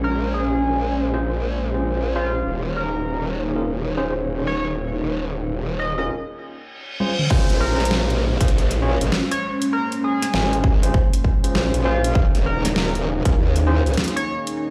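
Funky and swaggering, this glitch hop excerpt struts at 99 BPM in Bb minor with a swung 16th-note feel. An edgy, tearing sync lead with chorus and digital delay carries the melody over a smooth analog pad and a warbly, nostalgic tape-like pad, both pumping in the background, while a growling, wobbling bass sits up front and an overdriven tine electric piano adds gritty stabs with fast tremolo and delay from 1.1 s. A reverse cymbal and downlifter arrive at 6.6 s ahead of a short drum fill, and at 7.3 s the drop lands with a punchy, overdriven electronic kick and a dubstep kit of deep snare, hi-hat, toms and crash, as the chords move between Bbm9 and Eb7sus4 in a large, bare-room reverb.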